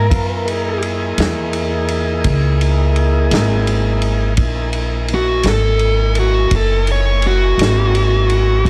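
This swaggering, gritty slow blues, cut from a longer piece, opens with a dark, overdriven electric lead guitar taking a picked solo up front, alongside a tonewheel organ's sustained chords and a woody upright bass. The tempo sits at 56 BPM in a straight 12/8 feel, centered on an F#13 chord in F# mixolydian. The organ is smooth and clean, with vibrato and a slow rotary speaker, while the pizzicato bass on gut strings sounds thumpy and close. At 0.1 seconds a soul drum kit joins with kick, snare and ride, recorded in a tight booth with a mid-forward, rolled-off top, somber cymbals and a medium-tuned snare. Light studio reverb gives the group a gentle sense of space.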